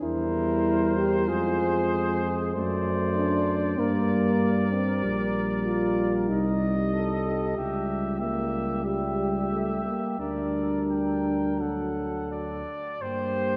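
Solemn and heroic, this rubato classical brass quintet passage, cut from a longer piece, sets a clear, distant trumpet melody with vibrato over a warm, vintage flugelhorn second line, while a mellow French horn accompanies until 12.6 s, a background euphonium fills in beneath, and an up-front bass trombone anchors the low end, the ensemble sounding inside a wet church reverb.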